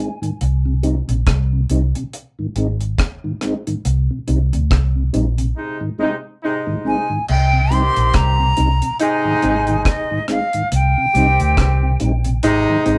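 A clean, mellow tonewheel organ with chorus vibrato, key click and a slow rotary speaker opens this serious, hypnotic roots reggae excerpt, soon joined by a dry acoustic drum kit with a tight kick and a dark, round, foam-muted electric bass up front, before a loose, smooth-topped horn section with tube saturation enters at 5.6 seconds during a break and an airy, tongued jazz flute with analog delay carries an expressive melody from 6.9 to 12.0 seconds, the band playing together in a small room captured on cassette tape.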